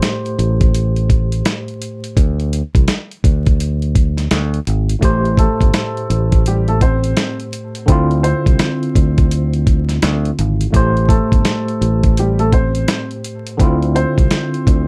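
A swung, head-nodding 4/4 groove from a gritty, compressed sampler-style kit with a thumpy kick and medium-tuned snare, sitting up front, drives this dark, reflective boom-bap hip-hop cut from a longer piece. A round, direct fingered electric bass joins at 0.4 seconds beneath a worn, slightly out-of-tune tine electric piano, lightly overdriven through a combo amp with a fast tremolo, opening on a break before settling into a brooding Am7 to Dm9 cycle. At 5.4 seconds a dark, mellow, woody, slightly detuned upright piano enters with the melody, filtered and bathed in plate reverb and analog delay, while vinyl crackle and a light room reverb give the recording its dusty patina.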